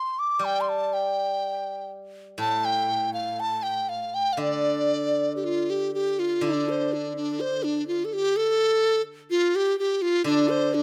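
A large bamboo dizi opens the recording, its hollow, airy tone carrying a buzzing membrane, vibrato and a soft attack, sitting intimate and up front. At 0.4 seconds a steel-string zither joins beneath it in accompaniment, bright and silvery, its fingerpicked low notes ringing out. This short cut from a longer Chinese traditional chamber piece moves slowly in 2/4 at around 58-63 BPM, with a rubato feel and a tender, wistful mood in the D yu mode. The dizi carries the melody from D4 to D6, while the zither sits lower in the balance as support. At 6.4 seconds the music moves into a new section, and both instruments continue to the end, captured by detailed, close microphones with a light reverb.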